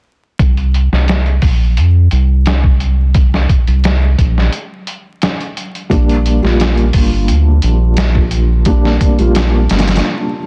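A straight 4/4 trip hop groove opens at 0.4 s, built on a pitched-down, compressed sampler-style drum kit of thumpy kick, medium-tuned snare and low-pass filtered hi-hat, re-recorded in a small room and sitting up front beside a round, deep analog bass with tube saturation. At 5.9 s a felt-muted upright piano joins with dark, intimate accompaniment, its action noise audible beneath tremolo, tape echo and 12-bit sampler grit, as the harmony shifts from Bbsus2 to Bb6. The melancholic, hypnotic cut is densely mastered with little reverb and a bed of vinyl crackle, and the piano plays alone after the drums and bass stop at 10.0 s.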